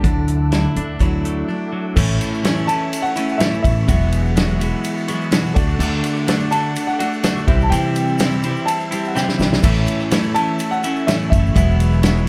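A straight 4/4 groove at 125 BPM drives this nostalgic, open-road folk-rock and heartland-rock excerpt in A major: a punchy, up-front country drum kit and a thumpy, woody pizzicato upright bass anchor a twangy, compressed twelve-string electric guitar riff, while a bright dreadnought acoustic guitar is picked in the background, a worn, boxy baby grand piano with audible action noise carries the melody, and a very quiet tonewheel organ with key click and rotary speaker holds chords; after a brief break, a smooth vintage upright piano and a grainy tube shaker join at 2.0 seconds, the whole set in a dark, lightly reverberant production.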